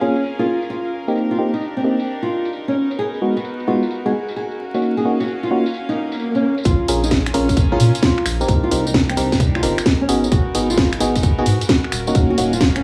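Soulful and skippy, this two-step UK garage excerpt swings at 131 BPM in Bb phrygian, cycling through Bbm7, Cm7, Abm7 and Ebm7 as a dark, boxy fingerpicked nylon-string guitar carries the melody through digital delay over gut-toned, reedy violin chords that pump under sidechain. An up-front FM electric piano adds glassy, bell-like stabs through chorus, filtering and dub echo, while a layered garage kit of cracking snare, bright filtered hats, finger snaps and tambourine skips along in a small room with vinyl crackle. An electronic swell runs from 5.9 seconds into the drop at 6.7 seconds, where a round, soft dub sub bass and a tight electronic kick join in.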